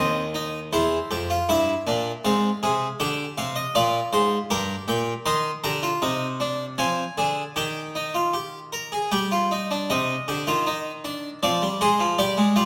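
Serious and driving, this short baroque-style classical excerpt presents a three-part fugue for solo harpsichord, moving at 79 BPM in 3/4 with a straight feel. The instrument is an Italian-style harpsichord with three sets of strings, and its plucked tone sounds full and brilliant, placed up front and spanning Eb2 to C6. The harmony passes through chords such as C7/E, Fm/Ab, Bb7 and Gm before settling in C minor from 5.3 s, then moves on through Dm7b5/F, Ebadd9 and a bare G5. A new section begins at 9.9 s, returning to C minor before turning to F minor as the cut from the longer piece closes at 12.7 s. A moderate recital hall reverb surrounds the instrument, and the tuning sits slightly low at A4 = 438 Hz.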